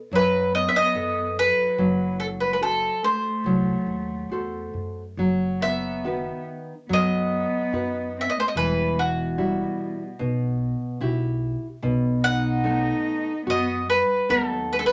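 A mellow, woody mandolin carries the melody near the front of this passionate, longing fado-style ballad, its picked double strings entering at 0.2 seconds. A fingerpicked nylon-string guitar with a warm, deep classical tone sits up close beside it in accompaniment, while a bowed cello plays a second line with dark sul tasto colour, soft attacks, vibrato and a smooth top, like a single intimate player. Underneath, a growly pizzicato upright bass with steel strings anchors the low end. The piece moves in a rubato 4/4 around 72 BPM, with harmony passing from B7 through F#dim, B/F# and Emadd9 before returning to B7 at 11.8 seconds. A wet studio ambience with a short reverb tail surrounds the ensemble, and the passage is cut from a longer piece.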